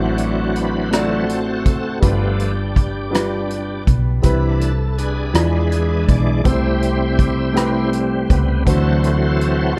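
A slow 6/8 gospel sway at 54 BPM, counted in dotted quarters, carries a jubilant, soulful mood through this fragment, with a small-room country drum kit of hi-hat, rim click and a punchy, up-front kick coming in at 0.2 seconds. A bright, shouting tonewheel organ takes the solo throughout, full and clean through a slow rotary speaker and chorus vibrato, over a woody upright piano with audible action noise and long sustain, and a round, amped hollow-body short-scale bass. Under light reverb and a dark, warm production, the harmony moves from D7/A through G7, Cmaj7, E7b9 and Am7/C before landing on D7.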